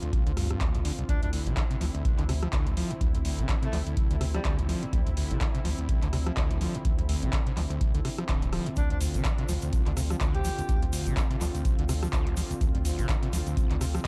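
Dark, warm production with light reverb and a digital ambience frames this gritty, driving acid house cut, taken from a longer piece and running at 125 BPM in 4/4 with a swung sixteenth feel in D minor, resting on a single Dm7 chord throughout. A squelchy, resonant acid bass riff with sawtooth bite, distortion and vintage 12-bit sampler grit carries the track from the start, pumping with sidechain compression alongside the deep, tape-touched electronic kick that arrives at 0.1 s. A round analog bass joins at 0.3 s, its mellow, wave-folded square-and-sine tone sustaining low beneath the riff, while a booming analog drum machine supplies handclaps, metallic hi-hats and rim clicks. Underneath, a smooth, detuned sawtooth pad holds soft-attack chords with chorus and sidechain pumping. A distant, roomy alto saxophone with vibrato and tape echo drifts in with a classical-style solo line at 1.1 s and again at 8.8 s, when a grainy, bright egg shaker also enters in the background.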